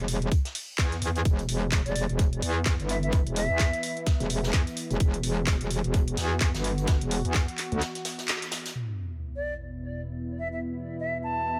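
A gritty, bouncy bass house excerpt in E minor at 128 BPM opens on an aggressive, metallic FM wobble bass, saturated and pumping up front. It is quickly joined by a tight electronic kick, garage-kit handclaps and low-passed hats, and a very quiet, distant acoustic kit of hi-hat and snare, all with a swung sixteenth feel. A detuned, warbling sawtooth pad and a pure, straight-toned concert flute roughened by 12-bit sampler grit and tape echo enter next, and after a break at 7.8 seconds a sub drop lands at 8.8 seconds before the flute returns over the pad at 9.4 seconds.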